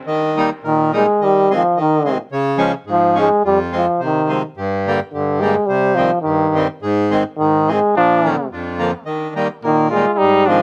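Festive and jolly, this short cut from a longer alpine folk dance-band piece moves at 107 BPM in a straight 2/4 in Eb major, with a reedy, hollow accordion up front providing accompaniment from the first moment. A clear euphonium carries the melody in a classical style with light vibrato and a vintage character, sitting prominently in the mix as the chords move from Eb through Db, Fm and Cm before returning home. At 8.0 seconds a softer trumpet with tape echo adds a warm second line, all captured with close, detailed microphones and light reverb.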